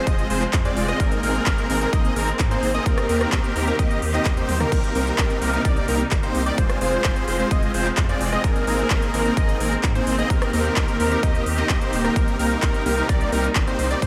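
Strings, a bright detuned unison lead and a huge, thick supersaw riff open this powerful, emotional festival progressive house excerpt in C minor at 129 BPM, joined at 0.1 s by a saturated sine sub bass, a punchy up-front kick and a crisp-hatted big-room kit with claps, rim clicks, crash and toms, with everything but the drums pumping with sidechain through Fm, Abadd9, Eb6 and Cm7 while a drum fill lands at 4.5 s and distant, lush bowed strings hold sustained chords beneath a dreamy church-reverb haze.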